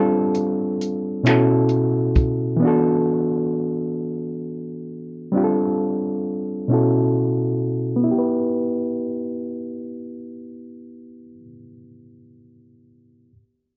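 Slow six-eight R&B at 44 BPM in E dorian, sultry and yearning, this cut from a longer piece sets a barky, gritty overdriven reed electric piano up front through a combo amp with spring reverb, moving through G9sus4, B9sus4 and E9sus4 chords before settling on Em at 8.1 seconds, while a compact, dry cocktail drum kit of finger snaps, hi-hat and a punchy kick plays only from 0.3 to 2.4 seconds, all in a rough, low-pass-filtered home demo mix with light reverb and a filter sweep across the first 8.1 seconds.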